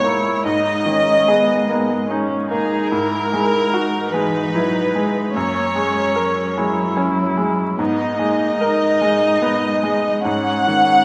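A veiled, con sordino chamber violin section carries the melody up front in this fragile, melancholic neoclassical excerpt in G# minor, drifting rubato in 6/8 at 49 BPM over a bright, woody upright piano with audible action noise and a slight detune, a distant solo viola with gentle portamento and a dark, muted cello second line, while the harmony moves through G#madd9, Eadd9/G# and F#add9 before returning to G#madd9 under a moderate scoring-stage reverb.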